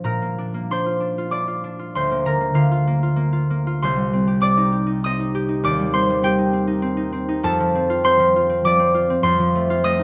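In a rubato 3/4 at 99 BPM, this peaceful, graceful classical solo in Bb major features a bright, ringing, fingerpicked concert harp spanning C2 to Eb6, placed up front in a moderate recital hall reverb as it moves from Bb through Cm to F and a closing F7 at 9.2 seconds before the cut from the longer piece.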